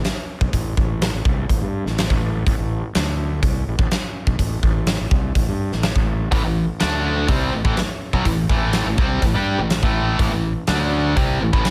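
A growly, fuzz-laden fingered bass and a huge arena drum kit with a fat snare, punchy kick and hi-hat open this menacing, aggressive hard rock excerpt, both sitting up front, the kit in a big, natural room sound. At 6.3 seconds two bright, picked guitars join on the riff, one an overdriven cranked stack and the other a tight distorted part placed up front. The harmony moves between Am and D5 under a studio reverb.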